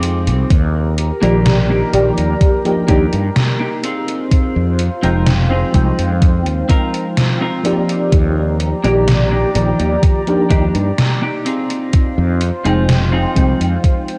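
A slow, straight 4/4 groove comes from a gated 80s digital drum machine, whose hi-hat and overdriven snare carry gated reverb and a large-room sheen, joined at 0.5 s by a thumpy, overdriven electronic kick sitting up front. This faded, dreamy vaporwave excerpt drifts between Fm7 and Ebmaj7, with a growly, bright fretless electric bass underneath, a soft, round FM electric piano coated in ensemble chorus and tape echo, and a twangy, clean electric guitar riff swimming in lush chorus and echo. Above them a warbling, detuned sawtooth pad holds nostalgic sustained chords, and the whole mix has the lo-fi hue of cassette tape with light reverb.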